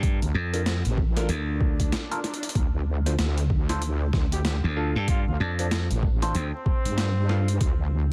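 A dense, heavily limited mix with vinyl crackle carries this playful, gritty glitch hop excerpt at 95 BPM with a 16th-note swing in D minor pentatonic, where a thumpy, pitched-down electronic kick and an overdriven boom bap kit with a high-tuned snare drive beneath a growly slap bass and a heavy, detuned wobble bass, bright tine electric piano stabs pump through phaser and tape echo, an electronic swell and drum fill mark a break from 1.9 to 2.6 seconds before the harmony settles on Dm7, and a distant, mellow trumpet solo enters at 4.3 seconds.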